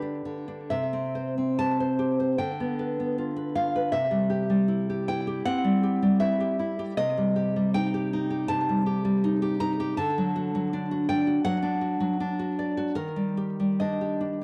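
A bright, fingerpicked nylon-string guitar with fresh strings, a deep classical body, audible finger squeak and a touch of slapback echo sits up front in this intimate, passionate romantic solo fragment, moving rubato in 4/4 at 64-85 BPM and tuned to A4 = 439 Hz through G, C, G7/D, Am7b5/C and D before landing on Ebmaj7 at 12.9 s, all captured in a dry, close 1970s-style studio recording with moderate booth ambience and a faint mains hum.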